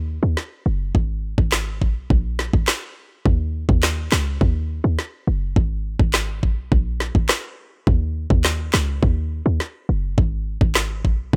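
Hypnotic and bouncy, this dancehall excerpt moves at 104 BPM in a straight 4/4. A short 808-style bass, punchy and tight with a sine tone, a noise layer and a fast, decaying attack, sits up front from the start. An electronic island pop drum kit joins at 0.4 seconds with a knocking kick, woody snare, rim click and handclaps, all dry and close.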